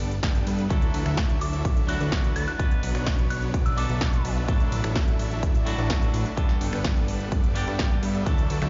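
Heard through a big sound system in a bare room with large studio reverb and a dulled top end, this uplifting, triumphant festival progressive house excerpt at 127 BPM pairs lush detuned supersaw chords and a fat, saturated analog sawtooth bass, both pumping with sidechain and the chords trailed by dub echo, with a punchy, up-front electronic kick, a tape-warm big-room kit of snaps, crisp hats, ride and snare, a twangy clean electric guitar bathed in spring reverb from 0.7 seconds, and a glassy, chorused FM bell melody glinting in the background between 1.4 and 4.2 seconds over a Gadd9, Dadd9, Bm and Dadd9/A progression.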